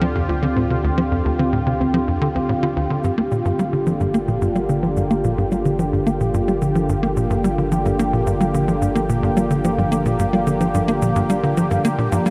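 Expansive and mysterious, this ambient, sequencer-driven space music moves at 109 BPM in a straight 4/4, starting on Dm7 and shifting to Gm7 at 3.0 s, all bathed in a huge ambient reverb. Up front, a bright, detuned sweeping resonant pad holds sustained chords with chorus, while a punchy sawtooth sequencer bass drives a riff through analog chorus and delay, and a deep, round sine sub bass anchors the low end. A soft, dark pluck plays arpeggios with chorus and delay in the background, and overdriven electronic cabasa and percussion blips with delay fade in from 3.0 s in this excerpt cut from a longer piece.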